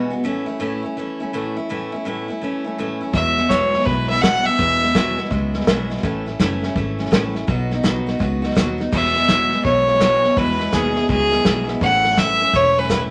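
A small room with moderate reverb and lossy compression artefacts frames this heartfelt, nostalgic honky-tonk and classic country excerpt in swung 4/4, where a bright, full-bodied picked jumbo acoustic guitar opens alone before a biting, clear bowed fiddle with light vibrato carries the melody up front from 3.1 seconds and again from 8.9 seconds, joined by a dark, round, foam-muted fingered electric bass and an acoustic drum kit played with bundle sticks, its punchy kick, medium-tuned snare, hi-hat and crash cymbal driving the groove.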